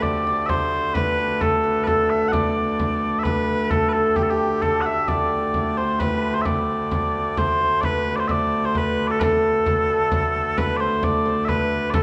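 Medieval dance in 3/4 at 131 BPM with a rustic, ancient mood: sweet, vibrato-tinged small bagpipes carry the melody up front, a shimmering hammered dulcimer rings out a second line, and a deep, close frame drum keeps time, the trio playing live together in a large reverberant studio, with a new section arriving at 7.8 seconds in this piece cut from a longer performance.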